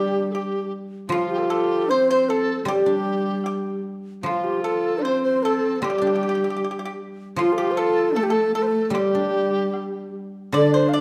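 A ringing, silvery guzheng sits up front in this pastoral, graceful excerpt of Chinese traditional chamber music, laying down a low accompaniment in G shang mode at 76 BPM in a rubato 2/4. The melody belongs to an airy, end-blown bamboo xiao with vibrato and a crisp attack, though it stays set back in the background. Around it, a large dizi adds a mellow, expressive second line with a buzzing membrane, soft attack and rolled-off highs, while a bright, dry pipa played with fingerpicks contributes a percussive voice. A single bowed horsehead fiddle gives a dark, woody, husky lower line full of vibrato and portamento. A bright woodblock enters at 1.1 seconds and sounds quietly in the background until 10.7 seconds, all under light reverb in a dark, warm production.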